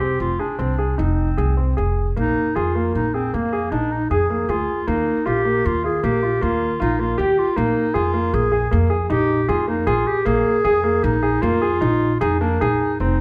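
Restless and urgent, this contemporary chamber piece in 7/4 at 155 BPM, tuned to A4 = 438 Hz and cut from a longer work, sets a smooth, soft-attacked classical clarinet as the up-front second line over warm grand piano arpeggios and a woody, thumpy pizzicato upright bass on steel strings, all three close in a moderate scoring-stage reverb as the harmony moves from Fm7 to Bb7sus4 at 2.2 s and Ebsus2 at 4.9 s.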